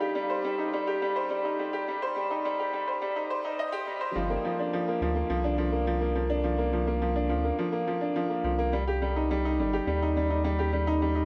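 In a straight 4/4 pulse, this cinematic, hypnotic fragment of piano-and-strings electronica opens with a brilliant, woody upright piano riff, up front and trailed by delay, building over Cm until a round, deep sine sub bass arrives with the drop at 4.2 s, moving through a rootless Gm7 and back to Cm at 8.7 s inside a huge, high-passed ambient reverb.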